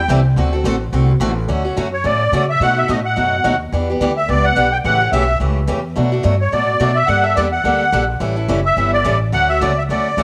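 A musette accordion opens this lively, swinging acoustic string swing excerpt with a solo melody, its reedy, shimmering voice sitting up front over a woody, thumpy upright bass plucked on gut strings. A bright, boxy parlour guitar on fresh steel strings joins at 0.1 seconds with picked accompaniment, an occasional finger squeak audible in its close, present tone. At 214 BPM in 4/4 with a swung eighth-note feel, the tune moves in D major and shifts into a new section at 1.5 seconds, where the harmony travels through chords such as Dmaj7, B7, Em7 and A9 before settling back on Dmaj7. The accordion's airy musette tuning carries the melody, while the dark bass anchors the bottom. A moderate echo-chamber reverb and studio ambience give the trio a lifelike sense of space.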